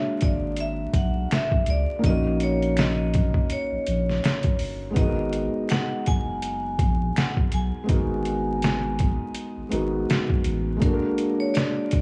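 A gritty, pitched-down trip hop sampler-style drum kit sits up front in this melancholic, hazy lo-fi hip hop excerpt in G# minor at 82 BPM with a swung 16th feel, its thumpy kick and medium-tuned snare joined by a deep, round dub sub bass that drops out at 10.8 s. A felt-muted upright piano with audible action noise plays mellow, intimate accompaniment while a dark, metallic vibraphone struck with hard mallets carries the melody through tape echo, and a very quiet finger snap appears from 1.3 to 7.4 s. Vinyl crackle and light small-room reverb wrap the passage as the harmony moves from A#7b13 through D#m7/A# to G#m9.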